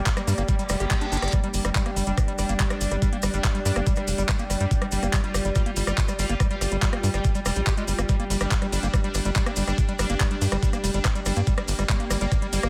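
Psychedelic and alien in mood, this psychedelic trance excerpt moves at 142 BPM in a straight 4/4, set in G minor. A knocking electronic kick sits up front alongside a tight, punchy sequencer bass, its dark sawtooth and square tones given a plucked filter and tube saturation, while a squelchy, gritty acid bass riff with resonant filter sweeps and delay pumps against the kick. Above them, a bright, detuned gated texture pulses with sustained chords, and a warbling, lo-fi pad with a nostalgic, vintage character drifts higher, both treated with chorus and their own reverb. A garage drum kit adds handclaps, metallic hi-hats, ride cymbal and rim clicks, with grainy maracas tucked in the background. A reverse cymbal sounds from 0.7 to 1.3 seconds, with a drum fill landing at 1.1 seconds, all within a light digital ambience.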